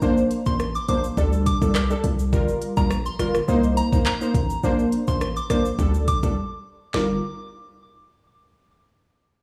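Dancehall in G minor at 104 BPM, this short cut from a longer piece feels tough and bouncy, with a straight 4/4 groove. An island pop drum kit of electronic, produced character sits up front, pairing a knocking kick and sharp snare with smooth hats, handclaps, rim clicks and shaker. Underneath, a hard-hitting 808-style bass hits punchy and heavy, its sine tone carrying a noise layer with a fast attack and decaying tail. Brassy synth stabs built from detuned sawtooth and triangle waves, wave-folded and shaped by a filter sweep, pump against the beat through sidechain and chorus while outlining Bbadd9, Dsus4, Gm7 and Cm7. From 0.5 seconds a soft, pure FM bell melody floats high and quieter in the mix, its long release colored by chorus, phaser and tape echo. A brief break at 6.4 seconds leads into a new section landing on Gm7, all held in light studio reverb.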